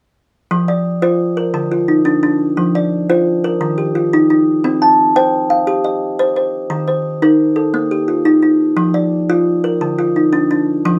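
A lone kalimba opens at 0.5 s with rippling arpeggios, its woody, hollow-bodied tone sitting up front and ringing out from each thumbnail pluck. The style is southern African traditional, moving in 12/8 at 116 BPM counted in dotted quarters, with a straight feel and a warm, rippling mood. The patterns span from D3 up to A5 in F mixolydian, cycling through F5, Dm, Eb, Cm and Bb/F before settling back on Dm near 9.8 s. A band-limited, vintage character colours the instrument, and a moderate studio reverb gives it the air of a live performance in a single room. This brief fragment, cut from a longer piece, ends at 11.0 s.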